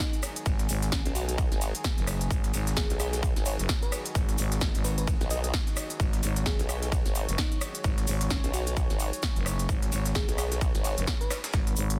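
Bass house at 130 BPM in G# minor with a 58% sixteenth-note swing, this bouncy, aggressive excerpt is driven by a punchy, up-front electronic kick, a big-room dance kit with crisp hats, rim click and snare, a gritty, pitched-up sampler-style breakbeat kit in the background, and a grainy tube shaker. A growling, thick FM bass entering at 0.5 seconds with tube saturation and a chorused, overdriven formant-sweep wobble bass arriving at 1.1 seconds both pump with sidechain compression up front, while a sparkling, bell-like FM electric piano carries the melody through cassette tape and dub echo. Underneath, a reedy chamber string section in period style holds filtered, pumping chords, and a deep, moody detuned pad sits very quietly, all inside a dense, heavily limited modern master with digital ambience.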